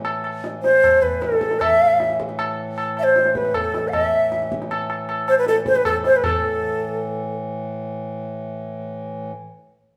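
A warm bamboo bansuri sits up front in this short cut from a longer Hindustani classical piece, entering at 0.6 seconds with an airy, soft-attacked tone, an unsteady vibrato and a longing, introspective voice in the range from A4 to F#5. Beneath it, a pedal harmonium holds a reedy, breathing drone from A2 to E3, close-miked, dry and full, sounding throughout and last to fade at 9.3 seconds. A high-tuned tabla rings with an acoustic, vintage, band-limited character before dropping away at 6.4 seconds. The music moves in 3/4 at 156 BPM with a straight feel, and the tempo gradually quickens as the performance unfolds. The trio plays live together in a stone room whose reverb adds a moist, lingering glow around the close, intimate sound.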